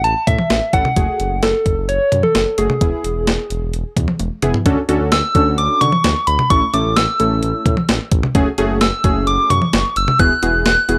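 A dry, gritty hardware recording carries this upbeat, nostalgic synth-pop excerpt in A major at 130 BPM, where a round, warbling FM lead with chorus and analog delay sings the melody over a smooth sawtooth-and-triangle bass, a thumpy, overdriven 12-bit drum machine with kick, snare, hi-hat and toms that rolls a fill at 4.2 seconds, and detuned analog keys with chorus and a filter sweep that enter at 0.7 seconds, all moving through chords from A and F#madd9 to Dmaj7 and Eadd9.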